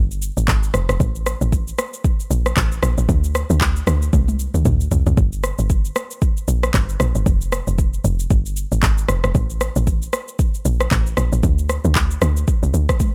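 Swung sixteenths at 115 BPM in 4/4 drive this short, deep and soulful amapiano cut, tuned slightly below standard pitch. An up-front electronic afro-pop kit with a deep kick, handclaps, rim clicks, shaker and toms carries the groove, breaking into a fill from 4.1 to 5.2 seconds. Alongside it sits an up-front, woody, punchy log drum bass with a fast attack and mellow decay, its FM tone edged with a noise layer, all set in a digital ambience.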